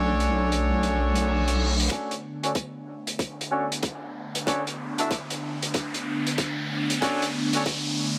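Swung sixteenths at 94 BPM drive this playful, funky glitch hop excerpt in B minor, where a muffled lo-fi hi-hat and a detuned, chorused analog pad holding a Bm9 chord sit beneath brilliant, vibrato-laden horn stabs with octave doubling and tape echo, a heavy, saturated wobble bass stops at 1.9 seconds just as a tight, layered electronic kick enters, a reverse cymbal rises from 0.9 seconds, and a riser and filter sweeps on the horns and pad carry the build-up to the close at 8.2 seconds in a dry, gritty hardware recording with light reverb.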